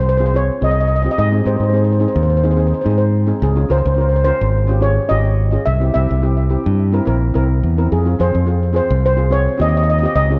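A mellow steel pan carries the melody up front, its soft, shimmering tone trailed by a digital delay, in this moody, cool calypso clip cut from a longer piece. A second steel pan, struck with medium rubber sticks, fills in the accompaniment with a boxy, small-room character. Underneath, a bright, punchy fingered electric bass sits direct and up front, and all three parts play from 0.0 to 10.4 seconds. The groove moves at 107 BPM in 4/4 with a light swing on the sixteenths, in F minor, passing through Fm, Ab, Dbmaj7 and C7 before settling on Fm7. Light reverb surrounds the mix, and a worn, warbling cassette-tape quality adds a warbly pitch drift.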